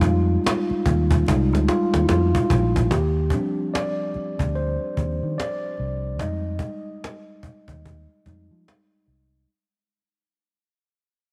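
A home cassette recording with light reverb gives this sensual neo-soul and R&B fragment an intimate, lo-fi sound, moving at a slow 73 BPM in 4/4 with a swung sixteenth-note feel. A mellow, clean tine electric piano, colored by cassette tape and placed up front, takes the solo over Fm9 and Ebmaj13 chords, joined by a round, dark fingered electric bass and a woody, saturated cajon with faint snares and hard hands. High-tuned congas sit barely audible until 2.7 seconds, a drum fill runs from 1.3 seconds, and the music fades out from 2.9 seconds onward.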